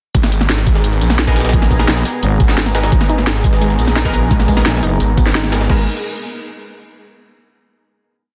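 Dark technical drum and bass with an aggressive, futuristic edge, driven by an overdriven, knocking electronic kick and a tight kit of cracking snare, bright hats, shaker and crash, with a gritty, pitched-up jungle breakbeat looping in the background, a thick detuned saw bass up front in chopped phrases, a growling FM bass answering it in short bursts at 1.9 and 4.7 seconds, a sweeping resonant pad holding sustained chords under sidechain pumping, a lush unison pluck cycling a 5-step sequence that drifts against the bar from 3.1 seconds, and bold orchestra-hit-like stabs echoing sparsely through tape echo, the whole mix pressed into a dense, heavily limited master before a closing chord.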